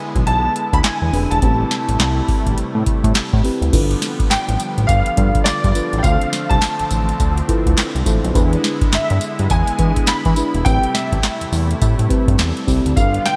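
New jack swing R&B in A minor at 104 BPM, with a confident, bouncy swing on the sixteenths, opens this excerpt on E7 before moving through Am7, G7, Dm7 and back. A clear, intimate grand piano carries the melody up high, its action noise audible beneath an ensemble chorus and digital delay, while a round FM electric piano with chorus and a brassy, detuned analog pad fill out the chords. Up front, a booming drum machine with a deep kick, crisp snare, metallic hats, handclaps, tambourine and crash drives the groove alongside a fat, saturated sawtooth bass with a plucky filter, all in a bright 1980s-style digital production with light reverb.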